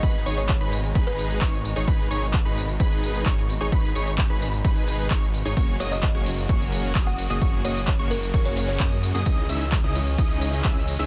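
A punchy, layered electronic kick sits up front from the first beat of this powerful, anthemic festival progressive house passage, joined at once by a big-room dance kit of handclaps, crisp hi-hats, ride cymbal and tambourine. Beneath it, a thick, menacing detuned saw bass pumps against the kick. A huge, airy supersaw drives a riff with vibrato and a trail of delay. Further back, a lush, bright unison pluck spins high arpeggios through a phaser, cassette-tape grit and delay, while a rich studio string section holds smooth, bowed chords. A short, woody kalimba melody flickers in the background, first at the opening until 1.7 seconds, then again from 5.8 seconds, and the kick falls away at 10.7 seconds in this dense, heavily limited mix, which is cut from a longer track.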